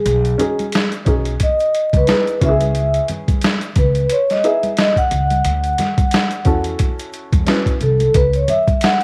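Jazz-hop at 89 BPM in C# minor with a cool, smoky mood and swung 16ths, where a soft-mallet vibraphone with slow motor vibrato carries a ringing, metallic solo up front over gritty, compressed boom bap drums with a thumpy kick, a woody pizzicato upright bass on gut strings, a mellow, short-sustain dark upright piano that enters at 0.4 seconds, and close, dry tube shaker and congas in the background, with chords moving from C#m7 to a rootless Dmaj9 amid light reverb and vinyl crackle.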